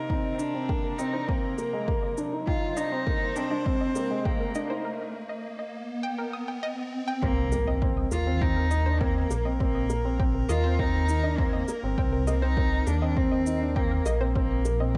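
A melancholic, hypnotic piano and strings electronica cut in C minor at 101 BPM opens on a soft, felt-muted upright piano riff over close, reedy string quartet chords that pump with the sidechain, while a distant, smooth cello carries the vibrato-laden melody. A punchy, overdriven electronic kick and a filtered shaker drive the build-up, as a round analog pluck arpeggio with chorus and digital delay sits in the background, shaped by a filter sweep of its own, alongside an electronic riser from 1.1 seconds. At the 7.2-second drop an impact lands and a deep, rumbling detuned saw bass enters up front, all set in a dark production with a lush hall reverb.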